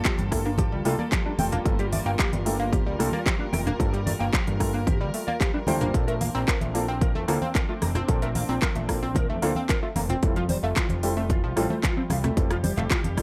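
Dry, gritty and transformer-saturated, this groovy, sensual nu-disco excerpt in G minor at 112 BPM rides a punchy, up-front electronic kick and a house kit of crisp hats, handclaps and rim clicks, with low-tuned congas in the background, while a fat, tube-saturated sawtooth bass anchors Gm9, Bbmaj9 and Fmaj9 beneath a deep, long-sustaining grand piano, a bright wave-folded analog pluck arpeggio with chorus and tape echo, a clean, fingered electric guitar riff with ensemble chorus, and distant, reedy bowed strings holding sustained chords, the piano, pluck and strings all pumping to the sidechain.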